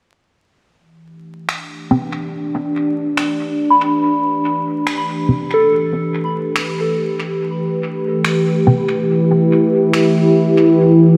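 A lush hall reverb and a bed of vinyl crackle frame this short piece of meditative ambient dub, cut from a longer work and moving at an unhurried 71 BPM in 4/4 with a light swing on the sixteenths. Up front sits a warbly, tape-like pad of detuned sawtooth and triangle tones, nostalgic and lo-fi, holding sustained chords on Am9 with slow attacks, long releases, chorus and a filter sweep running through it. Electronic finger snaps, overdriven and set low, arrive first at 1.5 seconds and carry studio reverb and dub echo. A filtered dub chord stab, muted and deep with a sub octave beneath its square and sawtooth layers, plucks short chords through a phaser and dub echo until 8.9 seconds. From 3.7 seconds a soft FM synth bell adds pure, gentle arpeggios in the upper register, decaying through chorus, a low-pass filter and tape echo.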